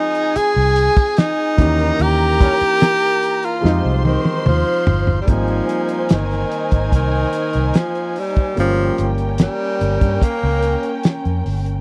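Lush 1970s-style soul at a slow 73 BPM in 4/4, this short excerpt from a longer piece carries a cinematic, bittersweet mood over chords moving from Fm7 through Eb7b9 to Fm9, then Abmaj7 and Gm7b5. A breathy tenor saxophone leads up front with vibrato and scooped notes in a jazz style, playing the melody until 11.0 seconds, while a dark, woody violin section adds a lush bowed second line above it. A clear grand piano sits in the background with audible action noise, and a round, foam-muted electric bass drives the low end beside a soul drum kit with a fat snare, tight kick and rolled-off top. A bright trombone section punches in with brief stabs from 2.4 to 3.9 seconds during a band accent, as a drum fill leads into the second section at 5.3 seconds. The sound is dry and close, a 1970s-style studio recording with little reverb.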